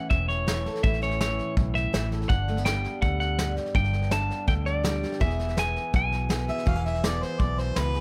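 A bright, twangy electric guitar carries the melody up front in this nostalgic, easygoing honky-tonk and classic country passage, moving over an A, G and E progression until 7.7 s. Beneath it, a full-bodied dreadnought acoustic guitar plays picked accompaniment, a dark, round, foam-muted fingered bass adds punch, and a natural-sounding brush kit keeps time with a tight kick and a medium-tuned snare. At 6.5 s a warm harmonica with vibrato enters with a jazz-style second line, all with very little reverb.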